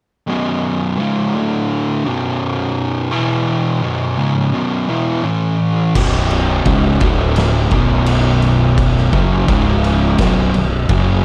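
Heavy and ominous, this 85 BPM stoner and doom metal excerpt in B minor opens with a dark, double-tracked fuzz guitar riff moving through B5, D5, E5 and A5 power chords before a round, punchy overdriven fingered bass and an oversized low-tuned drum kit with a boomy kick, fat snare and crash cymbal join at 6.0 seconds, all set in a small room with light reverb and a dark, warm production.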